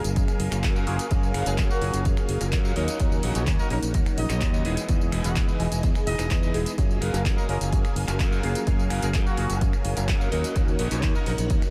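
A straight 4/4 groove at 127 BPM from an up-front, punchy electronic kick and an analog drum machine's tape-warm finger snaps, handclaps, hi-hat and tambourine drives this feel-good, joyful filtered disco house piece in F# major, where a bright, growly fingered electric bass, a funky detuned sawtooth polysynth comp with chorus and phaser, a swirling phased string machine and a slightly broken-up electric guitar riff with vintage 12-bit sampler grit all pump against the kick, a clear, tight horn section with vibrato and analog delay enters at 1.5 seconds, and the chords move through F#maj9, D#m7 and Emaj7 in light digital reverb.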